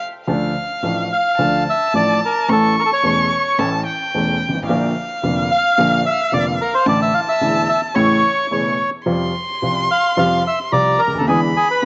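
Set in a rubato 4/4 around 109 BPM, this passionate, tense tango fragment in D minor moves from Dm through A, Bb and Asus4 to Fsus2 before closing on E7. A reedy, vintage-toned bandoneon carries the melody up front from 1.1 seconds, while a single bowed violin adds a rich, focused second line with vibrato and a boxy tone high above it. An intimate, woody upright piano accompanies from deep bass upward, its action noise audible, all in a small room with light reverb and a softened top end.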